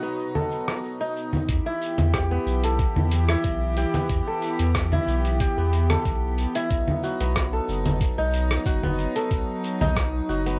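Organic downtempo with an earthy, hypnotic mood, this excerpt from a longer piece opens on a bright, crisp kora playing ringing, fingerpicked arpeggios through a filter sweep, over sustained chords from a chamber string section with a reedy, gut-string tone. A gritty, compressed, sampler-style soul drum kit of cabasa, congas, hi-hat and rim click sits up front from the start, its parts softened by low-pass filtering and cassette tape. At 1.5 s the harmony moves from B to Em, and a deep, round sine sub bass arrives with transformer saturation and sidechain pumping, alongside a thumpy electronic kick. The strings share that sidechain pumping, and the chords return to B at 6.7 s, while the kick drops out at 10.1 s. Strings and kora both carry plate reverb, the kora also trailing an analog delay, and the piece has the homespun character of a cassette recording made in a small room.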